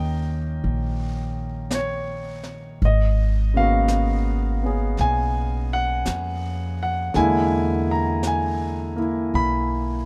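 Jazz ballad with a smoky, intimate mood, moving at an unhurried pace with a gentle swing. A clear, polished concert grand piano carries the accompaniment up front, its long sustain and deep bass filling the sound while the soft clatter of its action stays audible. Beside it, a woody, thumpy upright bass on gut strings plays pizzicato, close and present. A brush kit joins at 0.6 seconds on snare and hi-hat, sitting lower in the mix with a dark, smooth tone and a rolled-off top. The dry, close sound of this short excerpt follows the harmony from Eb7 to Abm11 and on to E7#11.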